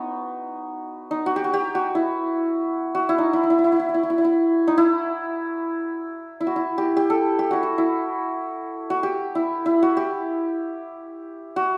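A bright, shimmering santur rings out alone from the first moment, playing in free time in the Persian avaz esfahan mode on E, with a longing, soulful character. Sitting up front and ranging from B3 to A4, the hammered strings bloom into a wet recital hall reverb with a 1.4 s decay. This short passage is cut from a longer piece, its two similar sections dividing at 6.2 seconds before it ends at 11.8 seconds.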